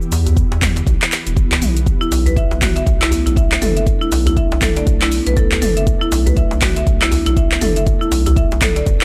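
A bright, woody marimba struck with hard mallets sits up front from 2.0 seconds, spinning arpeggios through a tape echo and pumping against the kick. This is a hypnotic afro house excerpt at 120 BPM in 4/4, with a swung sixteenth-note feel and a harmony that moves from E minor to Bm7 at 1.9 seconds. A deep electronic kick drives the groove, joined by a layered deep house kit of handclaps, dark hi-hats, shaker and toms, while a tight, cracking djembe with metal rattles adds close, dry hand percussion in the background. Underneath, a round analog bass with a fast attack and sustained, sine-like tone pumps in time with the sidechain. An ethereal, airy pad of detuned saw and triangle voices with a noise layer holds slow-blooming chords behind everything, colored by chorus, reverb and phaser. The overall sound is dry and gritty, with a hardware character and transformer saturation.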